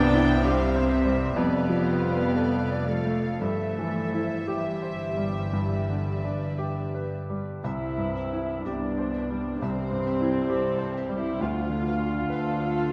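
A clear, up-front baby grand piano carries the melody in this lyrical, passionate romantic movement in C major, moving in a rubato 4/4 at about 56-67 BPM, while a floating symphonic violin section shares the melody with soft-attack sul tasto bowing. Behind them, a vintage-toned clarinet and a very quiet, expressive flute ensemble with rolled-off highs trace a second line alongside an intimate chamber violin section, as a studio viola section with light vibrato supplies the accompaniment and a mellow, tight French horn section holds sustained chords. A woody, distant double bass section and a very quiet, rich cello section anchor the bass under harmony that moves from C through G and closes on Bdim/D, heard in a wet scoring-stage reverb across this 12.9-second passage cut from a longer piece.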